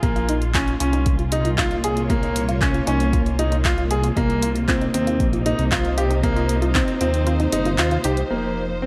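Piano and strings electronica with a melancholic, cinematic mood, heard as a short cut from a longer piece in a steady 4/4 with a straight feel. A clear, smooth concert grand piano sits up front playing a riff through a low-pass filter and delay, while a dark, woody studio string section holds lush bowed chords with vibrato and a sul tasto tone. Underneath, a detuned sawtooth bass rumbles, saturated and beating, pumping with sidechain alongside an electronic kick drum that is deep and layered. A deep house kit adds handclaps and hi-hat, its snare, hats and room all softened by low-pass filtering. An analog pluck, round and nasal with chorus, phaser, delay and sidechain pumping, plays arpeggios in the background from 0.2 s. The harmony moves from Bbm to Cm7 under a moderate scoring-stage reverb, and the kick stops at 6.9 s.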